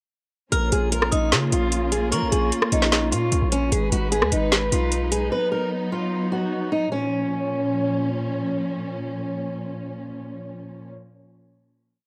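At 0.5 seconds the whole arrangement arrives together: a fingerpicked steel-string acoustic guitar carrying a looping melody, a dark, woody string section bowing a lush sustained pad with vibrato, a heavy 808-style bass, a trap drum kit and a bright, ringing FM bell. This menacing, melancholic trap hip hop piece sits at 150 BPM in a half-time feel, in Bb phrygian, with the chords moving from Bbm to Abm, then B, and back to Bbm. The guitar's melody repeats like a sampled loop and sits up front with cassette tape colour. Behind it, the inharmonic bell traces a sparse counter-melody through chorus and analog delay until 3.7 seconds. The drums lay down a half-time trap beat with a woody snare, metallic hats and rim clicks, while the punchy sine-based bass pushes long sub-bass notes with pitch slides; both drop away after about 5 seconds. From 6.9 seconds the strings hold a final Bbm chord, ending at 10.9 seconds, and the whole piece carries light reverb and the worn character of a home cassette recording.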